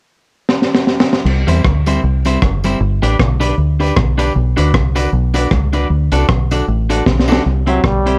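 A swung 155 BPM ska groove in 4/4 kicks off with a gritty breakbeat drum fill at 0.5 seconds, joined by a deep, round dub bass and a slightly broken-up picked electric guitar moving through C, G, Bm and D, while a jingly tambourine sits in the background and a bright trombone with light vibrato steps in at 7.7 seconds, all under light reverb and a cassette-tape sheen for a bouncy, upbeat feel in this excerpt.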